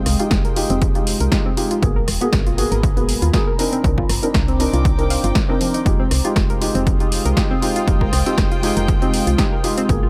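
A digital ambience and sidechain pumping surround this deep, warm slice of deep house, cut from a longer piece, where a detuned sawtooth pad and a bowed, sul tasto string section, fading in from the start, sit in the background beneath a woody FM bass. An overdriven analog drum machine supplies punchy snare, rim click and hi-hat over a punchy electronic kick, while a soft round pluck traces arpeggios through chorus, delay and 12-bit sampler grit. A thick-felt upright piano with audible action noise adds mellow stabs under a low-pass filter sweep and dub echo, as the chords move from Fm9 through Abm9 and Cm9 before returning to Fm9 at 5.9 seconds.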